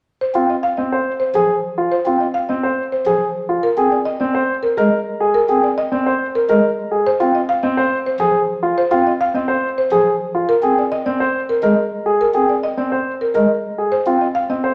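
A clear concert grand piano sits up front, spinning arpeggios between C4 and C5 from 0.3 seconds in this cut from a longer classical work in the minimalist pattern style. Above it, a buzzing marimba played with medium mallets carries the melody from Ab4 to F5, its hardwood bars sounding woody and close-miked. Beneath both, a pipe organ on stopped flute stops holds the accompaniment in a soft, hollow register with a touch of chiff and a baroque voicing, ending slightly earlier at 14.2 seconds. At 105 BPM in a straight 3/4 and set in F dorian, the harmony rocks between Fm7 and Abadd9 before closing on F7(no3). A wet, large studio reverb surrounds the ensemble, and the mood feels at once urgent and meditative.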